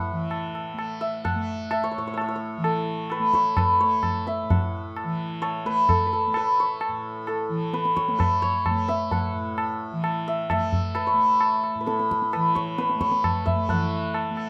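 Hindustani classical music in raga bhupali on A, meditative and devotional at 130 BPM in 5/4, cut from a longer piece, with a hammered, shimmering santur carrying the melody up front under plate reverb, a softly plucked, buzzing tanpura drone beneath it, and low-tuned, close, dry tabla entering at 0.3 seconds, all set in a dark studio space.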